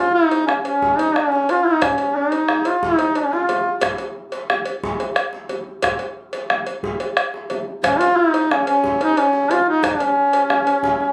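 Captured on a phone in a modestly reverberant room with compression, this driving, earthy fragment of West African traditional drum ensemble music moves at 120 BPM in 12/8 in D♭ major pentatonic, where an up-front duduk sings a folk-style solo melody with vibrato, soft attacks and scooped notes in two phrases (0.0 and 7.8 seconds) over a deep, dark bombo, a metallic, close and dry cowbell, and a tight, cracking djembe played with soft hands that sits distant in a large room.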